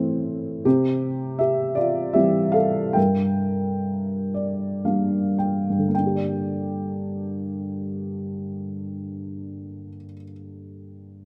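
A dark, woody upright piano plays alone in this brief fragment of a wistful, reflective classical piece in 3/4, its slightly detuned tone carrying long sustain and audible action noise through close, detailed miking. The rubato phrasing slows from 0.7 to 5.9 seconds as the harmony moves from Am through C to Gm, with a piano fill from 3.9 seconds. A contrasting passage begins at 5.9 seconds, and the instrument sits up front in a moderate recital hall reverb.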